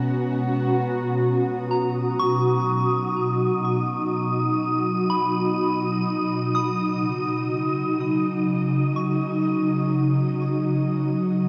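This serene ambient excerpt opens on a G#m11 chord from a mellow, detuned synth pad placed up front, joined high above by soft, pure FM bell arpeggios and a breathy, wind-like tuned noise texture. Beneath them, a tense, string-like drone with vibrato sounds only briefly, stopping at 0.8 seconds as the harmony settles onto Bmaj7. Soon after the opening, a filter sweep begins on the ensemble-chorused pad, and at 6.5 seconds the chords move to D#m7. The gentle bell line carries chorus, phaser and delay, while the recording sits in a huge reverb with an 8.2-second tail. A worn, warbling cassette character with drifting pitch gives the piece a hazy warmth.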